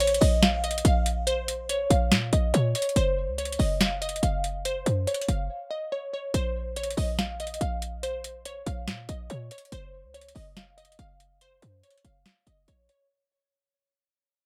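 A half-time trap beat at 142 BPM drives this eerie, hard-hitting hip hop excerpt, where a booming analog drum machine with crisp snare and metallic hats, a punchy, tight 808-style bass with a noise layer, and a crystalline, detuned wavetable pluck with chorus carrying the melody all sit up front in light reverb over Bb and Gb chords, with a break at 5.5 seconds and a fade-out running to the end.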